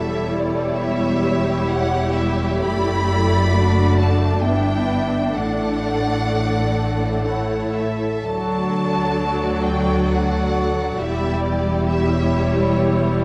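A dark, warm concert-hall glow surrounds this slow, lyrical romantic movement for string orchestra in D major at 64 BPM in 3/4, where a clear, focused violin section carries the melody over a softly attacked second violin line, an intense, up-front viola accompaniment, a smooth cello section set in the background and a close, expressive double bass section, all bowed with vibrato and shaped by rubato as the harmony moves from C#dim/E through D/F# and Em7/G to A and D before returning to C#dim/E at 11.0 seconds, the melody stopping at 12.8 seconds.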